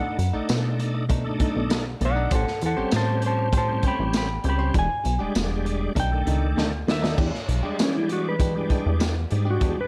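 Straight-eighth soul blues at 99 BPM with a swaggering, gritty mood, this cut from a longer piece features a dark, clean lap steel guitar taking a slide solo over shouting tonewheel organ with chorus vibrato and slow rotary speaker, twangy direct-recorded guitar stabs through analog delay in the background, a punchy, plucky analog bass up front, and a saturated breakbeat drum kit with dark cymbals whose fill at 6.6 seconds leads into the second section at 7.2 seconds, all in a small room reverb over B7#9, A7#9 and E7#9 chords.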